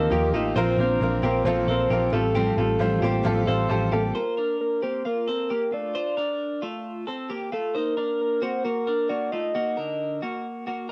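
Bright and youthful, this 133 BPM indie pop excerpt in Bb major pairs a soft, octave-layered synth lead, sine-like and sustained with chorus and vibrato, with compressed, twangy twelve-string electric guitar arpeggios that run to 10.9 s, while a brilliant, woody upright piano with audible action noise, a full-bodied fingerpicked steel-string acoustic guitar and a dark, foam-muted, up-front electric bass drop out between 4.1 and 4.2 s as the Ebadd9, Bbsus2 and Fadd9/A changes give way to Bb and Ebm, with cassette-tape character on the lead, guitars and piano and moderate reverb.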